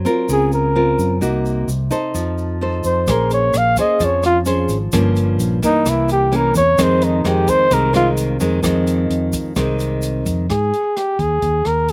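Melancholic and intimate, this short bossa nova fragment in F minor moves at 130 BPM in a straight 4/4. A mellow flugelhorn carries the melody up front, playing a jazz-style solo with scooped notes. Beside it, a fingerpicked nylon-string guitar, also up front, gives classical, gently warm accompaniment with audible finger squeak, while a fingered electric bass supplies a dark, round, amped low end and an egg shaker adds a grainy, bright texture. An open jazz drum kit with hi-hat, rim click and a boomy kick joins at 3.1 seconds, sounding natural and acoustic. The harmony moves through rich jazz chords such as Gbmaj7#11, Cm7b5, F7, Bbm9 and C7b9 before settling on Fm7. At 10.5 seconds the guitar and shaker stop and an Ab5 chord opens a brief new section for the remaining parts. The overall sound is dry and close, captured outdoors.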